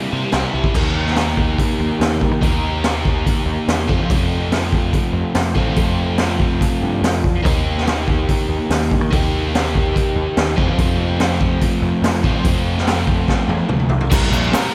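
A raw, gritty garage drum kit sits up front, with a boomy kick and a high-tuned snare, and it drives this carefree yet wistful indie rock excerpt at 144 BPM in a straight 4/4. A biting, double-tracked overdriven guitar plays the riff over chords moving from C7 through Eb and F, while a punchy fuzz bass adds a bright, distorted low end. A light small-room reverb surrounds the band, and after a drum fill at 13.3 seconds, a grainy tube shaker slips in quietly in the background at 14.1 seconds.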